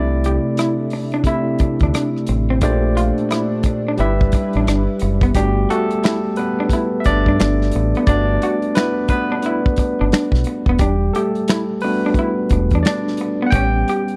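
Soulful and warm, this short excerpt of R&B and neo-soul sits at 88 BPM in G major with a swung sixteenth-note feel. A warm soul drum kit with finger snaps, rim clicks and a tight kick plays up front beside a dark, round dub bass. A bright, barky tine electric piano takes a solo from 5.3 seconds, while a slightly broken-up, lo-fi guitar adds a second line and a lush, detuned chorus pad sustains chords in the background until 5.3 seconds, all in a dry, close 1970s-style studio sound.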